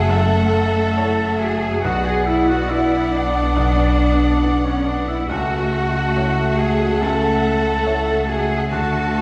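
A rubato 4/4 pulse around 70 BPM carries this moving, bittersweet cinematic film-score fragment in F# minor, cut from a longer piece, as chords drift from F#m7 through Bmadd9 to Dsus2 over its 9.2 seconds. A warm, expressive violin section sings the melody with vibrato, shadowed by an airy silver flute, a focused second violin section, a smooth-topped clarinet and a distant, roomy oboe, while a brilliant baby grand piano and an even viola section fill in the accompaniment. Mellow French horns hold soft-attack chords, and lush cellos join an up-front double bass section on the bass, all set back in a scoring-stage reverb.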